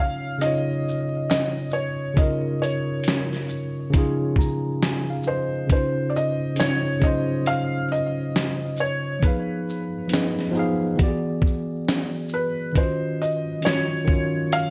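A swung 68 BPM lo-fi hip hop groove in Db major rides a gritty, sampler-style drum kit entering at 0.4 seconds with thumpy kick, fat snare, hi-hat and shaker, alongside a worn, slightly out-of-tune tine electric piano that plays a fill from 3.9 to 5.7 seconds and a soft, felt-muted upright piano melody with audible action noise, all wrapped in vinyl crackle for a mellow, cosy mood in this short cut from a longer piece.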